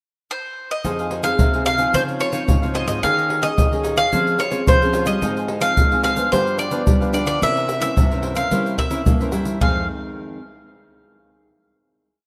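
A rough home-demo sound with a moderate plate reverb frames this short, complete samba and choro piece in F minor, moving at 110 BPM in a straight 4/4 with a nostalgic, bittersweet mood. A picked bowl-back mandolin enters first at 0.3 seconds, its double strings sitting up front as it carries a motif-based melody of song-like phrases between C5 and F5. From 0.8 seconds the rest of the group joins: a fingerpicked nylon-string guitar plays thumb bass and syncopated plucked chords, a second nylon-string guitar with fresh strings gives a classical samba bass figure, and a crisp cavaquinho strums in sixteenths in the background. Egg shaker, deep surdo and pandeiro sound close and up front, as if in a small room. The harmony passes through Fm7, Dbmaj9, Eb7sus4, Ab6, G7 and C7b9 before the group settles on a final Fm7 at 9.6 seconds, with the accompanying guitar ringing on until 10.4 seconds.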